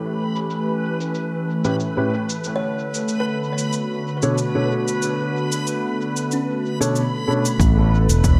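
A lightly swung 4/4 groove carries this hazy, meditative ambient dub fragment, cut from a longer piece, with a distant, roomy cabasa ticking through a low-pass filter almost from the start. A warbling, nostalgic pad sits up front, holding mellow detuned chords that drift from A7 to Bm7 under chorus, phaser and its own reverb. A reversed, swelling granular texture glows softly behind it. From 1.6 seconds a dark, woody upright piano adds filtered stabs that trail into dub echo, with a filter sweep shaping its tone. A soft, hollow kalimba enters at 2.6 seconds, its short fingertip arpeggios airy and tucked into the background through tape echo. At 7.6 seconds the chords return to A7 as a bright, direct fingered electric bass and a punchy layered electronic kick arrive, all set within a moderate echo-chamber reverb.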